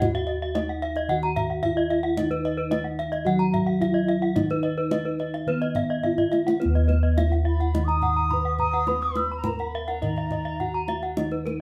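A mellow bronze metallophone carries the melody in this shimmering, hypnotic Balinese gamelan excerpt at 107 BPM in Eb pelog, over an unevenly pulsed 4/4 with round, beating bossed gongs in the bass, a deep kendang, two ringing metallophones spinning arpeggios (one soft and padded, the other dark, smooth and horn-struck), a bright, horn-struck accompaniment metallophone entering at 2.2 s, a drum fill at 6.0 s leading into a new section, and a breathy, close-miked bansuri adding an unsteady second line from 7.5 s, all set in a moderate room reverb as a live ensemble.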